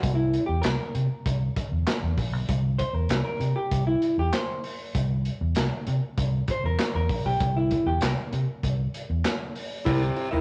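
A dark, clean hollow-body jazz guitar takes a picked solo over a C7 chord from the start, alongside a round, foam-muted fingered electric bass and a crunchy breakbeat kit of tight kick, medium-tuned snare, handclaps, hi-hat, crash and dark cymbals, roughened with vintage 12-bit sampler grit. The gritty, energetic funk groove sits in a stone room with a rough rehearsal-room, cassette-tape sound. At 9.9 seconds the harmony moves to C9 and a raspy, edgy tenor saxophone with light vibrato steps in up front for the closing moment of this excerpt.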